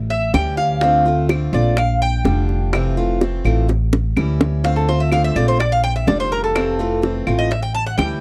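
A bright, metallic Cuban tres with octave-doubled strings takes an up-front solo of picked arpeggios over a thumpy, woody pizzicato upright bass, a boxy archtop guitar with finger squeak, round low-tuned bongos and compressed background claves in this sultry, danceable Cuban son and guajira excerpt at 126 BPM in D minor, cycling A7, Dm7, Bb6 and Fmaj7 with a drum fill from 3.7 to 4.6 seconds, in a dry, close 1970s-style studio sound.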